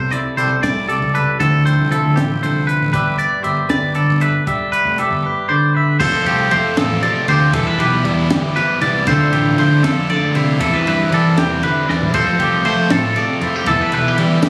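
A straight 6/8 pulse drives this intricate, restless math rock and midwest emo passage, cut from a longer piece, where two up-front, twangy clean electric guitars, one bright and picked playing accompaniment and the other scooped and fingered spinning arpeggios, sit over a growly fuzz bass and a compact cocktail drum kit with a high-tuned snare, punchy kick and dark, rolled-off top. At 6.0 seconds a biting, double-tracked overdriven guitar riff enters, and the drums break into a fill at 11.9 seconds. Caught on a phone in a club room, the sound carries a light reverb.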